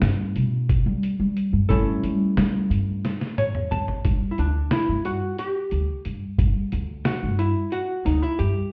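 Progressive instrumental band music in 7/8 at 179 BPM, counted in eighths, with a straight, driving and bright feel in this short cut from a longer piece. An archtop guitar, miked and amplified, provides clean, picked hollow-body electric accompaniment over a rootless F#m7/G chord. Below it, a pizzicato upright bass with steel strings sounds woody, dark and thumpy, while a compressed, pitched-down, sampler-style drum kit adds a muffled, thumpy kick, a medium-tuned snare, hi-hat and toms, all three parts placed up front. At 3.0 seconds the drums and the guitar both play fills, and at 4.0 seconds the music shifts to a G5 chord as the guitar launches into a solo that runs to the end. The whole mix sounds muffled, as if heard through a wall, with stone room reverb, light reverb and EQ.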